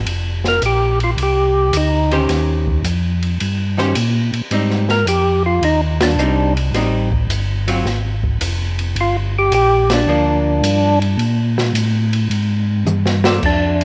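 Lightly reverberant and greasy, this bluesy soul jazz organ trio excerpt swings at 108 BPM in 4/4, with a mellow, round tonewheel organ carrying the bass line through chorus vibrato and a slow rotary speaker, an open jazz kit sounding boomy and rolled-off in a small room, a fat, percussive second organ with third harmonic percussion taking the up-front melody, and a hollow-body archtop guitar adding dark, picked accompaniment from 2.1 s, as the band hits accents at 5.9 and 9.8 s before a drum fill at 12.9 s.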